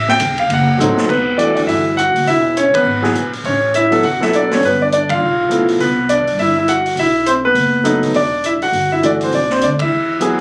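Late-night and moody, this brisk jazz piano trio excerpt swings at 204 BPM in E minor, with an intimate, up-front concert grand carrying the melody over deep bass notes, audible action noise and long sustain, a woody pizzicato upright bass, and a vintage kit with dark cymbals and a punchy kick that adds a drum fill at 0.8 seconds before the band hits several shared accents, all captured on a phone in the room with light club reverb and compression.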